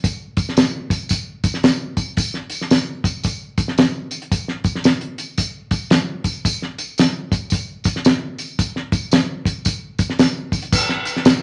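A cloth-damped, thuddy drum kit sits up front with a fat snare, tight kick, dark crash and hi-hat, joined from the start by a jingly, vintage tambourine lower in the mix, laying down an uplifting soul groove at 112 BPM in 4/4 with a swung eighth-note feel, all set in a club-like reverb with a rolled-off, dusky top end across this 11.4-second cut from a longer piece.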